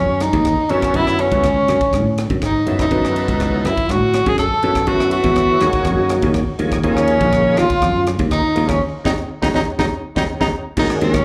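An excerpt of nocturnal, intense electric jazz fusion at 122 BPM opens with a bright tenor saxophone carrying the melody up front, vibrato and scooped notes in its jazz-style solo line, while a trombone with a metal mute plays a buzzy, breathy second line in the background, both touched by plate reverb and slapback echo, with tape echo added to the trombone. Underneath, a dry thumbed slap bass sounds growly and punchy, foam-muted and direct. A crisp, polished fusion drum kit comes in at 0.2 seconds, its high-tuned snare, punchy kick, rim clicks, ride and crash cymbals set in an airy studio room. An overdriven tonewheel organ joins at 0.7 seconds with thick, gritty accompaniment, colored by a slow rotary speaker and chorus vibrato. The harmony moves from Ebm7 to Gbm7 and later Ebm9, and a band accent lands at 8.8 seconds, with the trombone dropping out at 10.5 seconds. The whole performance is heard through a venue's PA with club ambience and light reverb.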